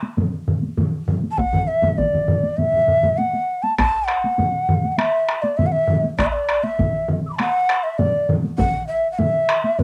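Recorded at home on cassette in a damp, tight booth, this cut from a longer Japanese traditional taiko piece moves at 100 BPM in a straight 4/4 with a powerful, driving mood. Several taiko ensembles pound within the opening fraction of a second: one is struck with hard sticks up close, one uses heavy sticks with a vintage, band-limited tone, and another sits distant in a large room, while a further close, dry group with hard sticks plays from 1.4 s to 8.7 s. Over them, from 1.3 s, an up-front bamboo shakuhachi carries the melody with a breathy, hollow tone, chiffy crisp attacks, vibrato and lifted highs, coloured by cassette tape and plate reverb.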